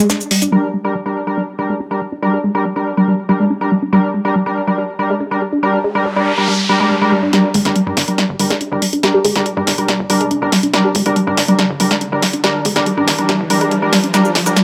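A straight 4/4 pulse drives this relentless, intense peak-time techno excerpt, where a squelchy, resonant blip pluck riff and an edgy, nasal sync-sweep polysynth playing up-front stabs both move through filter sweeps over a dry 70s drum kit with a fat snare sitting in the background, until at 7.3 seconds an overdriven, punchy analog drum machine takes over with a drum fill, a tight sawtooth sequencer bass enters beneath, and an electronic noise sweep and riser, present since 5.9 seconds, push the build-up inside a small, wet stone room.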